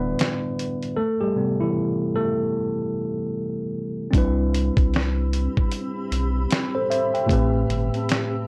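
A swung 76 BPM lo-fi hip hop groove from a gritty, compressed soul-sampler drum kit with a thumpy kick and fat snare sets a melancholic, reflective mood in A minor, moving through Em7, Am7 and Cmaj7, as a worn, slightly out-of-tune tine electric piano sits up front through a low-pass filter and plate reverb over a round sine sub bass with transformer saturation, the drums dropping out from 1.0 to 4.1 seconds while the piano takes the lead, before a cloudy, detuned granular pad drifts in at 4.7 seconds, the whole passage, cut from a longer piece, carrying warbling cassette-tape pitch drift and light reverb.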